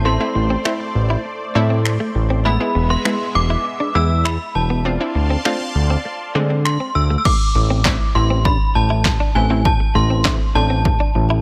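This driving, bittersweet dance-pop excerpt in A harmonic minor opens at 100 BPM with a ringing, inharmonic FM chime melody, an evolving supersaw swell treated with phaser and sidechain pumping, and a fat, detuned sawtooth bass, over chords of Am, E and Dm7. A round, warbling analog pluck with chorus joins, along with a clean, compressed direct-recorded electric guitar riff in the background, and the punchy, tape-toned analog drum machine arrives at 0.7 s with kick, snare, handclaps, finger snaps and crash. The kick drops out from 4.9 s, and after the swell stops at 7.2 s the music settles back onto Am in a new section, all set in a digital ambience.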